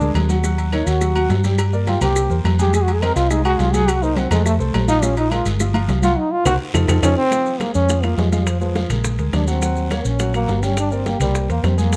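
Close, detailed microphones and light reverb frame this sultry, fiery Afro-Cuban jazz excerpt at 209 BPM in Bb minor, with a warm trombone up front soloing with light vibrato and scooped notes until 7.3 s, as a band accent and drum fill lead into the next section. A dark, round hollow-body electric bass also sits up front, while a smooth vintage grand piano accompanies through chords such as Ebm7, C7, Fm7 and Bbm7. Bright, compressed congas, tight high-tuned cowbell and bongos, ringing metal-shell timbales and agogo bells, woody claves and a raspy guiro stay in the background, with grainy, mellow maracas heard close.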